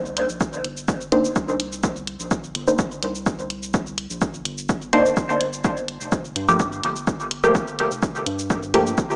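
Dub techno at 126 BPM in C dorian, hazy and cavernous, this short cut from a longer piece moves from Cm9 to Gm9 at 5.2 seconds. A punchy, up-front electronic kick and dry electronic cabasa and hi-hat sit over a round, dark analog bass pumping with sidechain, while a muted, detuned sawtooth chord stab with a filter pluck enters at 1.1 seconds, colored by phaser, cassette tape and dub echo. A wet spring reverb soaks the mix, which comes across with a small-speaker sound.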